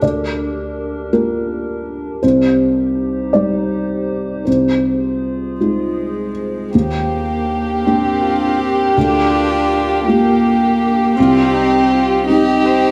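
In a rubato 6/8 at 54 BPM, this tender, intimate neoclassical piece for piano and strings in Eb major, taken from a longer work, opens with an up-front, boxy felt-muted upright piano, its action noise audible, laying down accompaniment over a warbling, nostalgic lo-fi pad of detuned sustained chords with chorus. A warm, airy-bowed cello second line enters at 5.6 s, a close chamber violin section takes the melody on G4 with light vibrato at 6.7 s, and a dark sul tasto viola joins at 7.8 s as background accompaniment, all cycling through Gm7/D, Cm, Ab6/C and Ebmaj7 within a moderate recital hall reverb.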